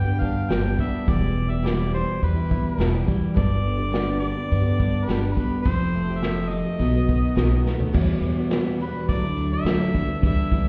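Folk rock and heartland rock with a nostalgic, open-road mood, where a clear, close-miked harmonica carries the melody with light vibrato and scooped notes over a picked steel-string acoustic guitar, a twangy, slightly broken-up electric guitar riff bathed in lush chorus, a woody, thumpy pizzicato upright bass up front, and a distant, roomy acoustic drum kit played with bundle sticks under dark cymbals that enters at 0.2 s and drops a fill at 7.7 s, all heard as if muffled through a wall with stone room reverb.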